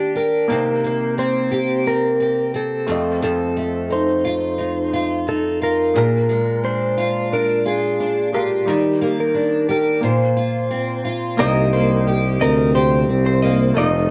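A dark, slide-played lap steel carries the melody through plate reverb over a woody, double-tracked picked acoustic guitar on old strings, opening a heartfelt, sunny acoustic pop fragment cut from a longer piece, with a soft felt-muted upright piano joining at 0.5 seconds, its action noise audible and intimate. At 11.4 seconds a punchy, up-front tuba with light vibrato takes the bass, while a compressed, direct-recorded clean electric guitar adds arpeggios through spring and plate reverb. Chords move from Cm7 through F7, Bb7 and Ebmaj7, and the whole recording sits in a wet studio room on worn cassette tape whose warbly pitch drift gives it an aged sheen.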